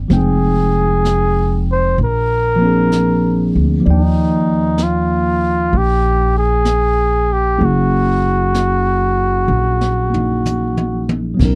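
A dry-sounding excerpt of a tender, intimate jazz ballad at 64 BPM with a swung feel, where a clear, up-front flugelhorn carries the melody with light vibrato and scooped notes over clean tine electric piano heard through a combo amp, a woody, thumpy pizzicato upright bass, and a distant, roomy brushed drum kit with dark cymbals and a boomy kick that plays a fill from 9.5 seconds, as the harmony moves from Fm9 through Bb9 and Ebmaj9 to Gb7.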